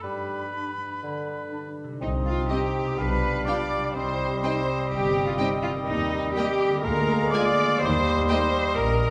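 An up-front, rich cello section carries the bass alongside the double bass section from 2.0 s in this playful, whimsical, sneaky and magical C minor film cue at 124 BPM, cut from a longer piece, where airy flute, bright oboe, a warm bassoon and ringing harp arpeggios open the scene, a dark and distant clarinet joins at 0.5 s, and very quiet violins take the melody and second line with violas and mellow French horn chords joining at 2.5 s, bathed in a wet scoring-stage reverb.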